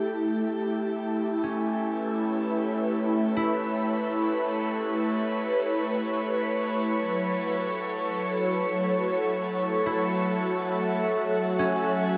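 Weightless and serene, this ambient passage floats in free time, centred on A mixolydian and cut from a longer piece. An airy, breathy pad sits up front through the full 12.2 seconds, holding sustained chords with a slow attack and long release, its bright, detuned tone colored by chorus and phaser. Behind it, a concert harp plays ringing, fingerpicked arpeggios in a narrow middle register, its acoustic sound trailed by tape echo. Fainter than both, a very quiet bowed-like drone sustains a tense, string-like tone with vibrato and phaser. The harmony rests on A9 before shifting to F#m7 at 6.9 seconds, and a shimmer reverb with a long 6.6-second tail bathes the whole space.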